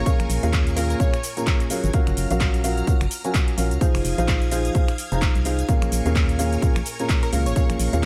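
Soulful and bittersweet, this piano house cut from a longer track moves at 128 BPM in 4/4 with a swung sixteenth-note feel, set in Bb minor and tuned slightly flat to A4 = 438 Hz. A punchy, tape-warm electronic kick sits up front, layered with a house kit of finger snaps, handclaps, shaker and metallic hi-hats. An organ-like FM bass with a hollow, dark, fast-decaying tone pulses with sidechain pumping, while a grand piano carries the riff close to the listener, its boxy body and audible action noise giving an intimate feel, colored by delay and sidechain pumping. Behind them, a shimmering vintage string machine of sawtooth violins holds slow-attack chords with ensemble chorus through Bbm7, Gbmaj7, Fm7 and back to Bbm7. A bright, catchy, detuned unison lead with vibrato, lush chorus and delay states its melody in the opening 1.7 seconds and returns briefly at 7.2 seconds, and the mix sits in a digital ambience.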